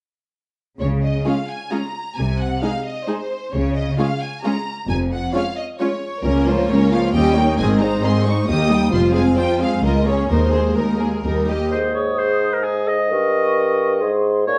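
Cheerful and spirited, this quick classical-period movement for symphony orchestra moves at 132 BPM in 3/4 with a rubato feel, cut from a longer piece and starting in Db major before turning to Ab major from 6.2 s. From 0.8 s, bowed string sections carry the music: a rich, distant first violin section sings the melody high above, while beneath it a lush cello section and a clear double bass section hold the bass, their vibrato adding body to the low end. At 1.3 s a smooth, close second violin section joins to trace a second line, and a focused viola section fills in the accompaniment. At 11.7 s the strings give way to a woodwind passage, where an up-front oboe with light vibrato and a vintage-toned clarinet in the background share second lines, a hollow, airy flute section hovers softly at the top, and a mellow bassoon supplies accompaniment. The whole sits in a wet stone room reverb, and the harmony closes back on Ab at 14.0 s.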